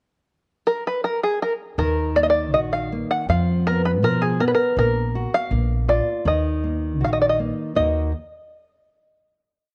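A fingerpicked open-back banjo, twangy and plunky with a touch of plate reverb, carries a mournful, longing melody in short song phrases through this brief fado-style ballad in Eb harmonic minor at a rubato 80 BPM, entering alone at 0.7 seconds before a full-bodied nylon-string guitar playing bass notes and chord figures and a woody pizzicato upright bass on root and fifth join at 1.8 seconds, all heard through the warbling pitch drift of worn cassette tape.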